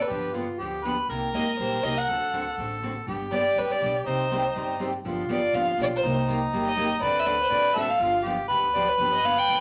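Swinging and fiery, this excerpt of acoustic string swing in the jazz manouche style moves with a brisk, lilting swing feel. A single bowed violin carries the melody up front, its dark tone shaped by expressive vibrato and portamento with a smooth top end. Beside it, a mellow harmonica plays a jazz-style second line with scooped notes. A picked steel-string dreadnought guitar gives full-bodied accompaniment with fresh strings and the odd finger squeak, while a pizzicato upright bass on gut strings adds a woody, thumpy pulse beneath. The harmony cycles through G7, Cm7 and D7, and a second section begins at 5.0 s, all set in a wet small room.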